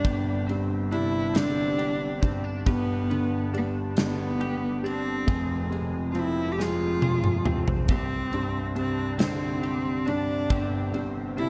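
Romantic and tender, this slow six-eight pop ballad at 46 BPM, cut from a longer piece, sets a rich, bowed cello melody with smooth vibrato and digital delay up front over an open, long-sustaining baby grand piano, bright, twangy twelve-string electric guitar arpeggios with ensemble chorus, and a huge arena drum kit with punchy kick, ride, snare and toms that plays a fill from 6.6 to 7.9 seconds, all moving through Csus2, G and F minor in a dark, warm production with small room ambience.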